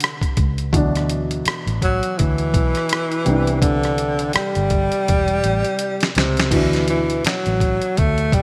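A bright 1980s-style digital production bathes this short cut from a longer piece in a lush hall reverb, lending a sensual, soulful neo-soul and R&B groove a glossy sheen. Up front, a breathy tenor saxophone carries the melody in a whispered, close-miked jazz voice, its soft attack and vibrato making the solo feel intimate. Equally forward sits a gritty, pitched-down boom bap drum kit of compressed, sampler-style sounds: a thumpy kick, medium-tuned snare, hi-hat, rim click, handclaps and crash cymbal, swung on the sixteenths, with a fill from 5.1 to 6.5 seconds. A round, amped, foam-muted fingered electric bass with a vintage character joins at 0.4 seconds. In the background, a dark, mellow, woody upright piano accompanies the other parts over Cmaj9 and D69 chords.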